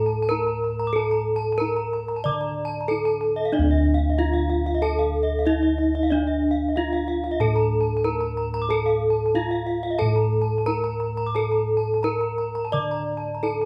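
Shimmering and hypnotic, this 13.7-second cut from a longer Balinese gamelan piece in D pelog moves at a straight 93 BPM in 4/4, with an up-front bronze metallophone struck with a horn mallet carrying a dark, smooth melody whose paired tuning beats, round bossed gongs giving a boxy bass underneath, and a second, brighter metallophone adding airy arpeggios from 0.1 seconds, all heard as a band playing live in one room with light reverb.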